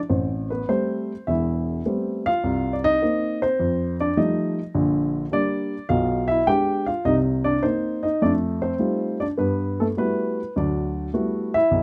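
A dark baby grand piano plays alone from 0.1 to 11.8 seconds in this short cut from a longer solo jazz piece, its mellow tone sitting up front with audible action noise and a short sustain. The mood is late-night and smoky, in A minor at 104 BPM in 4/4, with a swung eighth-note feel and rubato phrasing. The piano covers a range from E1 to G5, moving through Am9, Cm7, F9, Bb6 and Bdim7 before returning to Cm7 and F9 and settling on Gmaj13 at 9.4 seconds. Close, detailed microphones and light reverb give the sound an intimate, natural character. The instrument is tuned to A4 = 439 Hz.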